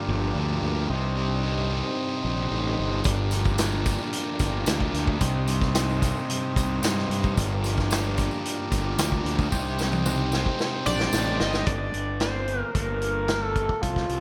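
This dark, mysterious psychedelic rock excerpt in G minor at 111 BPM opens with buzzy combo organ chords, a double-tracked fuzz guitar riff with phaser, a faint, warbling swarm of a drone and an overdriven fingered bass. Around 3 seconds a jingly tambourine and a gritty vintage drum kit with a punchy kick join in. A drum fill arrives at 9.5 seconds, and an edgy, tearing sync lead with chorus and delay takes the melody just before the organ, guitar and drone drop out at 11.7 seconds, leaving bass, drums and lead in a dreamy, reverb-soaked mix.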